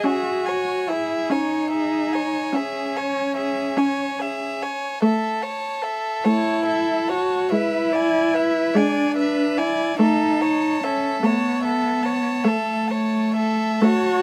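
Up front and close, a dark cello carries the bass beneath a woody viola accompaniment, both bowed with vibrato and sitting louder than the two violins above. In this melancholic, elegiac fragment of a slow romantic string quartet movement in 12/8, played with rubato across 14.2 seconds, the first violin floats a pure, soft-attacked melody over the second violin's intimate, airy line with light vibrato, and all four players bow sul tasto. Light reverb surrounds the detailed microphone sound.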